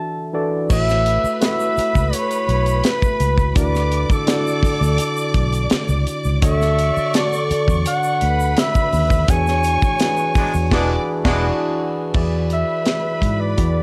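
A warm, scooped-note flugelhorn carries the melody through this short excerpt of lush 1970s-style soul in A major at 84 BPM, over a barky tine electric piano that is lightly overdriven through a combo amp with analog chorus. From 0.7 seconds a distant, bowed violin section adds an expressive second line with vibrato and portamento, while a dark, round, foam-muted fingered bass and a punchy, up-front studio drum kit with a high-tuned snare set the groove, and a grainy egg shaker sits in the background. A mellow horn section slips in soft-attack stabs from 10.4 to 11.4 seconds during a band accent on an E13 chord, all within a small room ambience.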